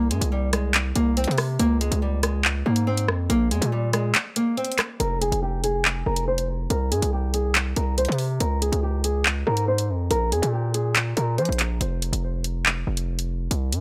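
A half-time drill groove at 141 BPM in 4/4 drives this tense, cold hip hop cut in F minor, taken from a longer piece. The electronic drum kit sits up front with bright hats, handclaps and rim clicks over a tape-warm, produced sound, and the kick drops out briefly just before the second section begins at 5.0 seconds. Beneath it, a distorted 808-style bass rumbles from F1 to F3, heavy and aggressive, its saturated sine tone carrying a noise layer, a fast attack and a decaying tail. A small, fingerpicked nylon-string guitar with fresh, bright strings plays the melody from G3 to C5 through a low-pass filter and delay, and a filter sweep colours it through the second section until it stops at 11.6 seconds. The harmony moves through C5, Db5 and Bb5 power chords, touching an Fmadd11 at the section change, and the piece closes on a break where bass and drums carry on. The mix is dry, with little reverb.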